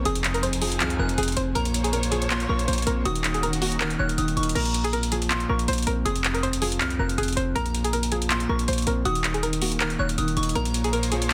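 A punchy, heavy 808 bass drives this melancholic, menacing trap excerpt at 160 BPM in a half-time feel in Bb minor, beside an up-front trap kit of metallic hats, handclaps and crash cymbal that sounds re-recorded in a large room. A twangy, string-like resonator pluck with chorus and a filter sweep carries the melody over a dark, boxy grand piano, while a soft, pure FM bell with chorus, phaser and digital delay adds a second line in the background. Bowed chamber strings with vibrato hold sustained chords until 4.5 seconds and return at 10.6 seconds, all inside a dry, dense, heavily limited master.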